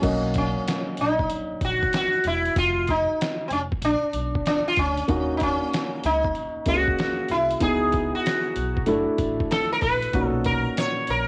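Jazz-hop with a cool, warm mood and a swung 4/4 feel, this 11.3-second excerpt from a longer piece sets an up-front, buzzing sitar melody with shimmering sympathetic strings over mellow, dark grand piano chords such as Bmaj9, D#m7 and C#m9. A woody pizzicato upright bass holds down the low end, while a gritty, compressed, pitched-down sampler-style drum kit of thumpy kick, medium-tuned snare, hi-hat and crash carries a cassette tape character and the sound of a large room. Light reverb and the character of a home cassette recording frame the mix.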